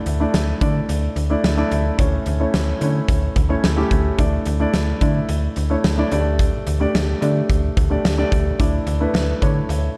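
This 1980s-style pop excerpt, cut from a longer piece, has a romantic, glossy mood and a straight 4/4 feel. A dark concert grand piano carries the accompaniment up front from 0.0 seconds, its mellow tone and short sustain resting on chords that move between Dsus2, A/D and Gsus2/D. Beneath it, a slap-like FM bass adds a snappy, metallic attack with a digital, quickly decaying edge. A big rock drum kit plays hi-hat, kick and snare, sounding acoustic and smooth in a big room, with a fat snare and a punchy kick placed up front. Light studio reverb and a dark, warm production tie the parts together into a polished sheen.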